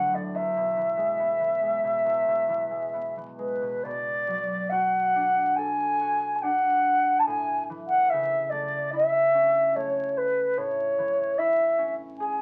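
Wistful and nostalgic, this Celtic slow air unfolds in a rubato 4/4 around 66-74 BPM, with a pure, wood-toned flute carrying the melody up front with vibrato and soft attacks while a mellow, fingerpicked concert harp rings quietly beneath through chords moving from E to Bm7 at 3.8 seconds, then A6 and finally A, all heard through a wet studio ambience and the crackle of a very old 78 rpm record in this short cut from a longer piece.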